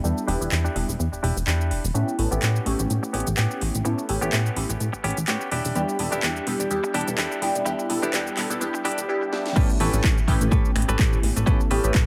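Nostalgic and funky, this filtered disco house excerpt moves at 126 BPM in a swung 4/4, with a warbling, detuned polysynth comp pumping through chorus, phaser and tape echo over a plucky, wave-folded analog bass and a house kit of cracking snare, metallic hats, cabasa, snaps and handclaps. A bright, twangy clean guitar riff enters at 0.3 seconds, and a filter sweep builds from 1.9 seconds as the chords shift between Em7 and A9, leading through a drum fill at 9.3 seconds. At 9.6 seconds the drop lands with a punchy, overdriven electronic kick up front, all set in an echo-heavy mix with moderate spring reverb.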